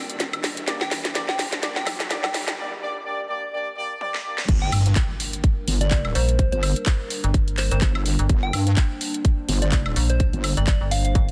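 A heavy, saturated wobble bass and a tight electronic kick arrive at 4.5 s, joined at 6.2 s by a metallic, overdriven FM bass, turning this aggressive, bouncy bass house excerpt from a build-up (a garage drum kit with cracking snare and fills, a background riser, filter-swept jazz-style horn stabs with tape echo, a soft, pure synth bell melody and a deep, moody analog pad) into a dense, heavily limited drop, opened by a background impact, where the basses and pad pump.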